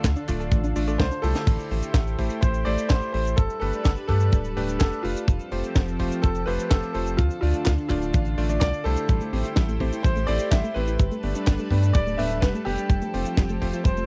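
This italo disco excerpt opens with everything at once: a bright baby grand piano carrying the melody between F4 and E5 through tape echo, over a lush, warbling unison pad holding sustained chords with chorus, a bright electric grand piano striking clangy stabs, and a deep, round analog bass sitting up front. At 126 BPM in straight 4/4 and A minor, the mood is melodramatic and bittersweet, with the chords moving from Dm through Am7, Gadd9 and Fadd9. A tight, up-front acoustic kick anchors the beat, joined by a funk kit with a high-tuned snare, hi-hat, handclaps, cabasa and crash cymbal, and a drum fill arrives at 1.0 seconds. A soft, mellow pluck with chorus and tape echo plays arpeggios in the background, dropping out after 1.5 seconds and returning at 9.1 seconds. The sound is dry and close, like a 1970s-style studio, with little reverb, and the passage is cut from a longer piece.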